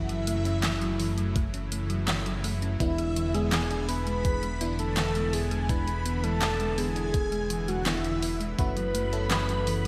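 At 83 BPM in a straight 4/4, a pop drum kit with a fat snare, bright hats and handclaps bathed in gated reverb drives this nostalgic, nocturnal synthwave excerpt, joined at 1.4 s by a thumpy, tape-warm electronic kick and anchored by an up-front, glossy chorused synth bass. A soft octave-layered synth lead with vibrato carries the melody beneath a shimmering string-machine violin line, while a smooth, full-bodied supersaw pumps sustained chords and a round, tine-like thumb-piano-style pluck plays arpeggios in the background. From 2.8 s a dreamy FM electric piano with a soft pad layer adds phased stabs as the harmony moves from F#m7 to E7, all within a lush hall and a bright 1980s-style digital sheen.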